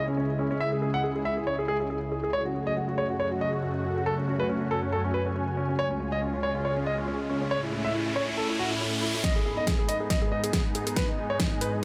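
This aggressive, heavy wobble dubstep fragment at 139 BPM opens with a concert grand piano carrying the melody, its intimate tone roughened by vintage 12-bit sampler grit and tape echo, with audible action noise under the keys. Beneath it, from the very start, a lush, detuned supersaw pad holds sustained chords through a phaser and sidechain pumping, while a filter sweep moves across it for the first 9.2 seconds. Further back, an ethereal, airy pad drifts in ensemble chorus and its own reverb, adding a mellow shimmer. The harmony moves through C#m, F#m, C# and A in G# phrygian before landing on G#m, and an electronic riser builds from 6.9 seconds. At 9.2 seconds the build-up begins with a drum fill from a punchy, tape-warm electronic kick and a dubstep kit with a huge, low-passed snare and bright, filtered hats, all pushed up front with studio reverb in a half-time, swung feel.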